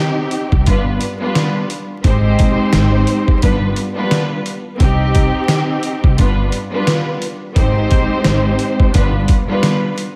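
A gritty, pitched-down sampler-style drum kit sits up front in this dark, tough boom-bap hip-hop fragment. Its thumpy kick, medium-tuned snare and hi-hat sound compressed and re-recorded in a large room, and they enter at 0.3 s with a swung sixteenth-note feel. A lush bowed string section opens the piece at 0.0 s and also sits forward in the mix. The strings play with vibrato, portamento and a smooth top, and a cassette-tape colour and filtering shape their sound. Beneath them, a woody pizzicato upright bass with steel strings joins at 0.5 s and holds the low end. The harmony circles through Cm, G7 and Abmaj7, all inside a dreamy plate-reverb wash dusted with vinyl crackle.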